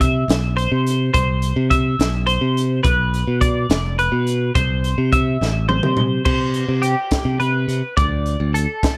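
A tight small-room sound with a pumping ambience frames this bright, playful math rock and midwest emo excerpt in 6/8 at 70 BPM in C major, where a twangy, compressed twelve-string electric guitar spins chorus-tinged arpeggios up front over a growly, direct picked bass and a gritty, saturated fusion kit with a high-tuned snare and punchy kick, whose fill from 5.4 to 6.3 seconds closes out the Cmaj7, Bdim and C6 passage before a new section arrives on C5 and D5.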